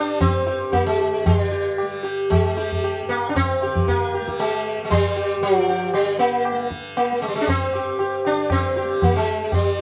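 Hindustani classical music in raga bhairavi on G, this brief excerpt from a longer piece carries a longing, introspective mood at 116 BPM in 4/4, with the pace gradually speeding up throughout. The plectrum-plucked sitar leads up front with a buzzing, shimmering voice alive with sympathetic strings, over a softly plucked tanpura drone that sits well beneath it, while the high-tuned tabla rings close and dry from 0.2 seconds. The trio plays live together in one room, framed by a moderate studio reverb, and a new section begins at 1.3 seconds.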